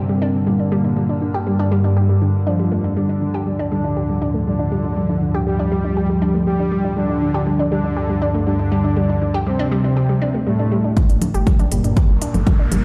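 Hypnotic and driving, this excerpt of melodic techno in G minor at 120 BPM opens with a mellow, brassy analog synth lead over a smooth supersaw second line, a morphing wavetable pad with phaser, chorused analog pluck arpeggios with dub echo, and a nasal, pulse-width-modulated drone in the background, all moving from Gm to Dm under filter sweeps and sidechain pumping. At 11.0 seconds the drone drops out as the harmony shifts to Gmadd9 and a build-up arrives, with a punchy, tape-warmed electronic kick up front and a deep house kit of congas, smooth hats and toms playing a fill. A fat, detuned sawtooth bass on G1 follows at 11.1 seconds, and a faint riser enters at 11.7 seconds. A lush hall reverb and playback on a big sound system in a bare room give the whole a spacious sound.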